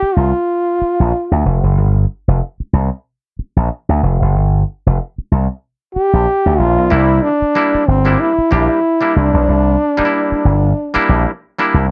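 Driving and funky, this funk excerpt at 93 BPM rides a light 16th-note swing over Gm7, moving to C9 at 6.9 seconds, with a bright, punchy slap bass through an envelope filter playing throughout. A breathy, whispered, intimate jazz trombone takes the solo melody with vibrato, a soft attack and a slapback echo, dropping out at 1.4 seconds and returning at 5.9 seconds. An overdriven, stringy clav enters at 6.9 seconds with percussive stabs through a combo amp, all set in a dark, warm, dry production.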